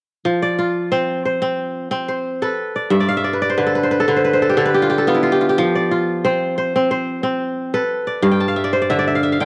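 Hypnotic and joyful, this short cut from a longer West African traditional piece moves at 90 BPM in a straight 4/4 in F Lydian, with a lone fingerpicked kora, bright, ringing and up front, weaving arpeggios from G2 to A5 over an alternating F and G harmony, breaking into fills at 2.9 and 8.2 seconds, all captured as a home cassette recording with light reverb and small-room ambience.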